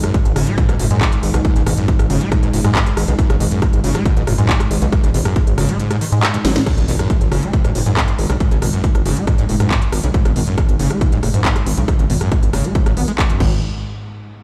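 A straight 4/4 pulse at 138 BPM drives this intense, industrial peak-time techno cut in G# minor, built on a heavy, overdriven electronic kick up front and a layered drum kit of cracking snare, smooth hats, handclaps, rim clicks and crash, all set in a small room ambience. A gritty, saturated synth bass pumps against the kick beneath a squelchy, distorted acid bass riff with resonant filter plucks, chorus and digital delay, while a deep, moody pad drones on G# in the background. The kick drops out at 5.8 seconds ahead of a drum fill, then a very quiet electronic impact lands at 6.7 seconds as a filter sweep begins on the synth bass, with the whole mix sounding like a big system in a bare room drenched in large studio reverb.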